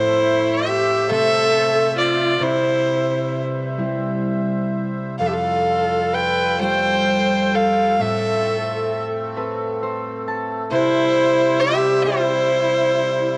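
A rich, nasal fiddle leads this Celtic slow air, carrying the melody up front with a touch of tape echo. Beneath it, a smooth viola plays a second line with vibrato, while a bright concert harp rings out a fingerpicked accompaniment and an accordion holds reedy, sweet sustained chords with a light tremolo tuning and a vintage tone. The mood is wistful and nostalgic, moving at 43 BPM in dotted quarters in 6/8 with uneven, rubato beats, tuned to A4 = 443 Hz. The harmony passes from Am through C and Fadd9 to Amadd9 before arriving at C, and the harp steps forward with a fill from 9.4 to 10.7 seconds. A moderate echo chamber reverb and a small room sound frame this short passage cut from a longer piece.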